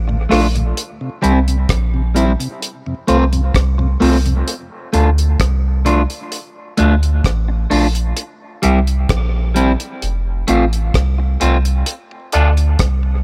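A round, soft sub bass sits up front through this slow dub reggae excerpt at 65 BPM in D minor, setting a spacious, deep mood over a cycle of Dm, C and F. An electric guitar at the edge of break-up shares the foreground, its dark, fingered tone coloured by phaser, a high-pass filter and dub echo. A dry reggae drum kit with a tight kick, rim click and hi-hat provides a smooth, rolled-off backdrop. A mellow tonewheel organ with key click and a slow rotary speaker murmurs in the background at the start and returns near the close. Most of the passage is a break, with a filter sweep from 8.2 seconds to the end. At 12.3 seconds a reedy, barky electric piano with light overdrive adds a brief stab through dub echo.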